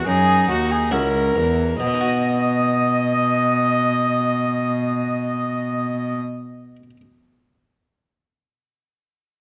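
A short excerpt from a baroque-style sonata movement with continuo opens with oboe, violin, harpsichord and cello all sounding together in B major at 67 BPM in straight 4/4, the pulse easing as it slows over the first 1.8 seconds. The mood is flowing and dance-like, with the harmony moving from F#5 to B at the 1.8-second mark as the music passes into a new section. A vintage-sounding oboe carries the melody with light vibrato, sitting in the background, while a dark, nasal violin with a gut-string, reedy edge plays a second line up front. A single bowed cello, also gut-strung and period in style, supplies a warm bass beneath them, and a round, plucked harpsichord in the Flemish manner fills in the accompaniment from low to high register. The oboe, violin and cello stop at 6.2 seconds, leaving the harpsichord to ring on alone until 7.0 seconds, all captured with close, detailed microphones and a light reverb.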